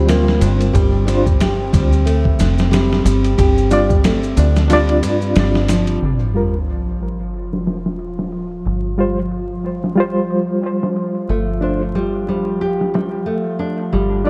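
An echo-heavy mix with vinyl crackle, light reverb and a digital ambience frames this dark, brooding trip hop excerpt at 91 BPM in 4/4, with a swung sixteenth-note feel. A reedy, barky electric piano sits up front with light overdrive, fast tremolo and tape echo, a filter sweep running across it as it plays accompaniment over Gm7 and Dm7. A warbling, nostalgic pad holds detuned, slow-attack chords beneath it, while a round, punchy fingered electric bass anchors the low end. A gritty sampler-style drum kit with a thumpy kick, medium-tuned snare and ride cymbal sounds compressed and tape-toned, its kick dropping out briefly before 6.0 seconds, when an electronic sub drop lands as an impact. A fingerpicked nylon-string guitar adds dark, dub-echoed arpeggios through the first section and returns at 11.3 seconds, and faint maracas sit in the background until 6.0 seconds.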